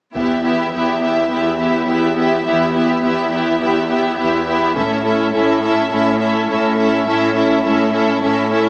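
A clear, focused viola section sits up front in this vast, tense hybrid orchestral and electronic film-score excerpt in E dorian at 104 BPM, its vibrato-laden bowing joined by a lush violin line with soft, expressive attacks and a smooth, even cello bass. Heavy-stick taiko hits sit in the background from 0.2 to 1.3 seconds and again from 4.8 to 5.9 seconds, as the harmony moves from Em to A through a steady build-up. A wet concert-hall reverb surrounds the strings, though the overall sound has the character of a small speaker.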